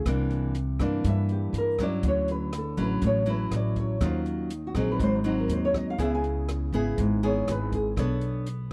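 Breezy and sunny, this short bossa nova excerpt at 121 BPM sets a thumb-plucked nylon-string guitar with audible finger squeak over chords moving from C9 through Dmaj9, D#m9 and G#7 to Bm9, joined by a woody, thumpy upright bass on gut strings and a dark, smooth jazz kit of hi-hat, boomy kick and rim click, while a fingerpicked classical nylon-string guitar carries the up-front melody from 1.1 to 7.9 seconds, all captured in a dry, close 1970s-style studio sound.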